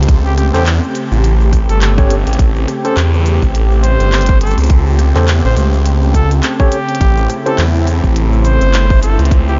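Gritty and funky, this glitch hop excerpt swings on its 16ths as a swirling, thick, saturated detuned saw bass and a tight, layered electronic kick sit up front, while a glitchy drum kit of clicky hi-hat, handclaps, rim click and shaker adds tape-tinged texture, a warbling vintage analog pad pumps with sidechain beneath a smooth solo trumpet with light vibrato and analog delay from 0.2 s, and a very quiet overdriven tine electric piano with fast tremolo plays stabs through a combo amp until 7.6 s, set in a light reverb and digital ambience.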